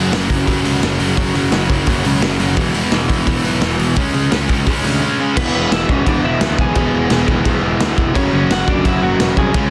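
A raw garage drum kit sits up front in this urgent punk rock excerpt at 172 BPM, its punchy kick, medium-tuned snare, hi-hat and crash saturated and gritty with a rolled-off top and a pumping small-room sound. Two picked electric guitars, one bright and distorted and one overdriven, play riffs in the background over a growly fuzz bass, moving through F#5, E5 and C#5 power chords. At 5.4 seconds a double-tracked fuzz guitar riff and a slightly broken-up, compressed lead guitar melody with digital delay join over E and F#m, all in a dense, heavily limited modern master with little reverb.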